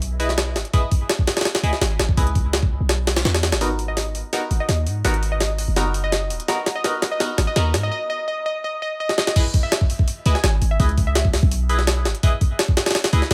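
A gritty, pitched-up jungle sampler-style drum kit with a thumpy kick and high-tuned snare drives this atmospheric, frenetic drum and bass excerpt at 167 BPM in C# dorian, joined by a deep, boomy 808-style bass that drops out at 7.9 seconds for a break before returning at 10.3 seconds, a nasal, band-passed chord stab with phaser and dub echo moving from C#m7 to G#m7, and a glassy, crystalline wavetable pluck melody with chorus entering at 3.9 seconds, all in light reverb.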